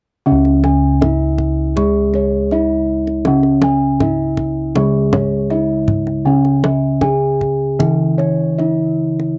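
A straight, even pulse in four underpins this short, stately Javanese gamelan passage, cut from a longer piece, with a shimmering bronze glow. Up front, a metallophone struck with padded disc mallets carries a mellow, vintage-toned melody. Beneath it, a lower metallophone played with a wooden mallet supplies accompaniment, while high bossed gongs in a boxy small-room tone spin arpeggios, full, close-miked bossed gongs hold the bass with a round, beating ring, and a deep, dry kendang keeps time, all set in a close 1970s-style studio sound touched with light reverb.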